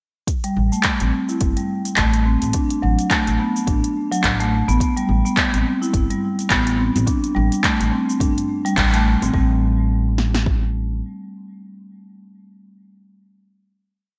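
A bright, 1980s-style digital production sits in a lush hall reverb, framing this mystical, earthy organic downtempo piece in A dorian at 106 BPM with a 16th-note swing. A deep house kit supplies a deep, overdriven kick and punchy snare, while a tape-warm organic kit adds crisp closed hats, shaker and handclaps, both treated with gated reverb. Up front, a woody, thumpy pizzicato upright bass pumps in a dotted rhythm under a marimba's 32-step arpeggiated sequence, which passes through delay and a filter sweep over Am7, Bm7/A, Cmaj7(no3)/A and D7sus4/A before a band accent at 8.8 s and a closing stretch from 9.3 s.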